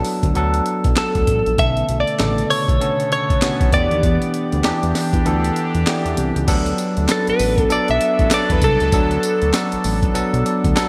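Upbeat and bouncy, this new jack swing excerpt in D major moves at 98 BPM in 4/4 with a 16th-note swing. A gritty, compressed breakbeat sampler-style kit sits up front with a thumpy kick, medium-tuned snare, hi-hat, handclaps, tambourine and crash cymbal. Beneath it a fat, saturated sawtooth analog bass with a filter pluck holds the low end, while a bell-like tine electric piano plays bright, clean accompaniment and closes with a fill at 10.2 seconds. From 1.0 seconds a direct-recorded electric guitar carries the picked melody with analog chorus and delay, and at 1.6 seconds a sweeping, detuned resonant pad enters with a slow attack, filter swells and chorus under the chords, which move from D6 through Bm9 and Em7 back to D6. The kick drops out between 5.3 and 6.5 seconds before a new section begins, and the whole mix carries a lush hall reverb and a bright 1980s-style digital polish.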